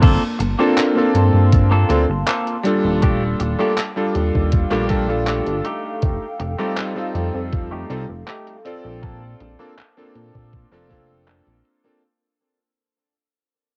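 A hazy, nostalgic vaporwave fragment at 80 BPM in G minor opens with a warbling, detuned tape-like pad in the background, a clean, hollow-body electric guitar riff soaked in lush chorus and tape echo under a filter sweep, a glossy pulse-wave synth bass up front, and a thumpy electronic kick with a detuned 8-bit drum machine of handclaps and a muffled hi-hat and crash. At 0.6 seconds a clangy, cutting electric grand piano joins with long sustain over the drifting Gm11, Ebmaj9#11, F9 and Bbmaj7 chords. The cassette home-recording sound and light digital ambience keep the whole passage fading out as it is cut from a longer piece.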